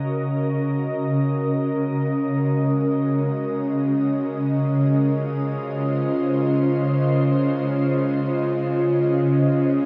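A glassy FM pad opens this serene ambient excerpt, holding full-bodied, ethereal chords up front with a slow attack, long release, ensemble chorus and its own reverb. At 0.5 seconds a string-like, bowed-sounding drone joins low in the register, fading in gradually beneath the pad. The drone carries a tense, bright edge from its sawtooth and triangle layers, unison voicing, a noise layer, ring modulation and vibrato, and it sits well behind the pad. Floating in free time in Db major, the harmony moves from Gb69 over Db to Dbmaj7 at 4.1 seconds, keeping the mood peaceful and suspended. A long, cathedral-like reverb and dark, warm production wrap the sound in a vast, hazy space, and the passage is cut from a longer piece.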